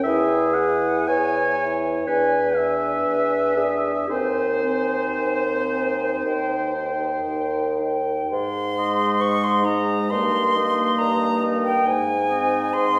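A wet recital-hall reverb surrounds this 13-second excerpt from a slow, tender romantic movement for wind quintet in Ab major, moving in a rubato 4/4 at roughly 55-69 BPM. Up front, the airy silver flute carries the melody with vibrato and soft attacks, joined by the close-miked oboe's light-vibrato second line, while the clear French horn and a dark, distant clarinet fill the accompaniment over the mellow bassoon's bass. Harmony drifts from E and E7 through Ab/Eb and Eb before settling on Ab around 8.3 seconds, passing through Eb/G and closing on Ab.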